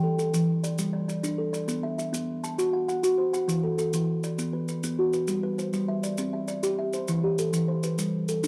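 Rippling and hypnotic, this brief home-recorded excerpt of southern African traditional music in a straight 12/8 sets an up-front, woody kalimba with a hollow-box tone and soft fingertip plucks spinning mbira-style interlocking arpeggios on cassette tape, while grainy, saturated maracas enter at 0.2 seconds beneath it, all bathed in moderate spring reverb and small-room ambience as the harmony moves through G, C and Em after 5.3 seconds.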